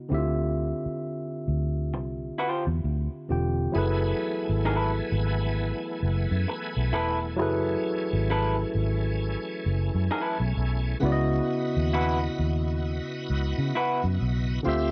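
A slow 66 BPM R&B groove in 4/4 with a swung sixteenth-note feel sets a sultry, soulful mood in F# dorian, with a barky tine electric piano carrying the chords from the start and a round, foam-muted fingered electric bass sitting up front beneath it. A dark, slightly broken-up electric guitar through a small old amp adds a lo-fi, compressed second line from 1.9 seconds, and at 3.7 seconds the harmony moves from Dm11 to F#m11 as a bright tonewheel organ enters with sustained chords, its key click, chorus vibrato and slow rotary speaker shimmering behind the other parts. The sound is dry and close, shifting to C#m11 at 11.0 seconds in this short cut from a longer piece.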